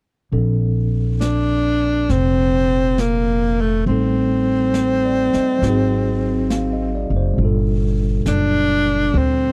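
A breathy tenor saxophone carries the melody in this intimate, romantic jazz ballad, entering at 1.2 seconds with a soft attack, gentle vibrato and a whispered, close-miked tone that sits up front. Beneath it, a tine electric piano heard through its built-in speakers supplies warm, clean accompaniment, moving through Bbmaj9, Am7b5, Ab7 and Gm9 in Bb major. A pizzicato upright bass with steel strings gives a woody, thumpy foundation, placed up front in the mix. A jazz brush drum kit keeps soft time on brushed snare and hi-hat at a slow 68 BPM, with a swung eighth-note feel in 4/4. The dry, close, 1970s-style studio sound and small room ambience make this short excerpt from a longer piece feel hushed and personal.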